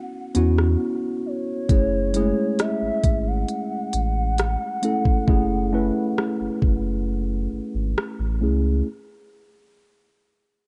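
A digital ambience surrounds this contemporary R&B recording, with a muted top end and a longing, sensual mood in a straight, unhurried feel. A mellow tine electric piano, worn and slightly out of tune, sits up front and carries the harmony from a rootless A6 to an F#m9 at 1.7 seconds, where a filter sweep begins and runs to the close. Above it, a gliding portamento lead plays the melody with a dark, detuned tone of sine and sawtooth, colored by vibrato, chorus, tape echo and a low-pass filter. An electronic drum kit with a knocking kick, silky hi-hats and rim clicks enters at 0.3 seconds with a tape-warm, produced sound. A deep, full sub bass doubled at the octave follows almost at once, sustained and placed up front, and a short break falls between 0.8 and 1.7 seconds before the passage settles in.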